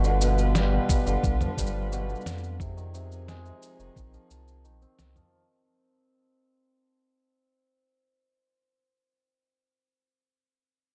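A shimmering, ringing hammered dulcimer sits up front in this wistful, intimate folktronica excerpt at 88 BPM in 4/4, playing arpeggios through a low-pass filter and delay with a filter sweep, and it rings on until 8.8 seconds after the other parts have stopped. Beneath it, a dark string quartet of bowed, one-player-per-line chamber voices holds sustained chords with woody vibrato and a smooth top, roughened by vintage 12-bit sampler grit. A round, sine-like sub bass sits up front with a fast attack and deep, sustained notes. A muffled, pitched-down lo-fi sampler-style kit of cabasa, a medium-tuned snare and toms is compressed and re-recorded in a large room, joined by a thumpy electronic kick from 0.9 to 4.1 seconds. The harmony moves from G7 to Fm7 at 2.6 seconds under a dark, warm digital ambience as the passage fades out over its first 5.3 seconds.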